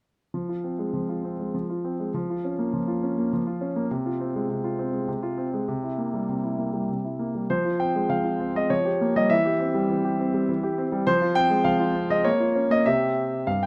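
Serious and dramatic, this classical-period piano sonatina fragment in F minor moves at 100 BPM in a flexible, rubato 3/4, with a clear concert grand playing solo from 0.3 to 13.7 seconds, its deep bass and natural tone captured up front by close, detailed microphones within a moderate recital-hall reverb, and a second section beginning at 7.5 seconds.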